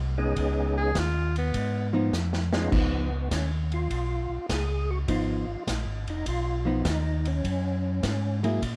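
A swung 4/4 groove at 102 BPM, with the eighth notes leaning into a 68% swing, drives this bluesy, greasy soul jazz organ trio in Db mixolydian. A mellow, round tonewheel organ carries the bass line from the very start, clean and up front with audible key click through a stationary speaker. The vintage acoustic drum kit sits mid-forward in a studio room, with dark cymbals, a medium-tuned snare, a punchy kick and a rolled-off top, and a drum fill closes the opening passage. A second tonewheel organ plays the melody with a fat, lightly overdriven, percussive tone, third harmonic percussion, chorus vibrato and a slow rotary speaker. A clear, forceful tenor saxophone takes a short jazz solo from 0.8 to 1.9 s, full of vibrato and scooped notes with a smooth top, and then a compressed, picked hollow-body archtop guitar enters to comp over the Db9 and Gb9 harmony in this excerpt. Light reverb and a dark, warm production give the whole track a smoky glow.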